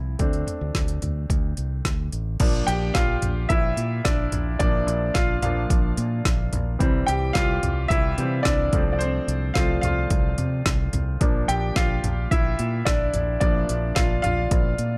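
Dramatic and bittersweet, this piano-driven pop excerpt moves at a steady, straight pulse in 4/4 and is cut from a longer piece. A clear concert grand piano sits up front with a polished, present tone and deep low end, carrying the accompaniment in plate reverb while also taking a solo that runs through the whole passage. A fingered electric bass supports it with a round, punchy, direct sound, and a deep house drum kit joins at 0.2 seconds with an electronic, layered character: a deep kick, woody snare, smooth hi-hats, plus crash cymbal and toms, all placed prominently. After a brief opening built on an Amadd11 chord, the music shifts at 2.4 seconds into a longer section that moves through Bb, C and F/C before returning to Bb. The overall production is dark and warm, with light reverb around the ensemble.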